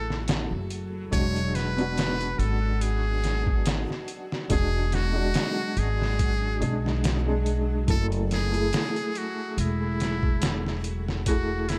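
A dry, close-sounding excerpt of brooding, smoky trip hop at 71 BPM with a lightly swung sixteenth feel, tuned slightly sharp to A4 = 444 Hz, moving from F#m7 to E7 and back to F#m7 at 7.9 s. A buzzy, metal-muted trumpet with vibrato carries the jazz-style solo melody through 12-bit sampler grit and tape echo, over a soft felt-muted upright piano with audible action noise, tremolo and a filter sweep, and a woody, growly pizzicato upright bass up front. A compressed, pitched-down sampler drum kit with a thumpy kick and small room reverb comes in at 0.1 s, while a very quiet reversed, detuned granular texture swells dreamily beneath.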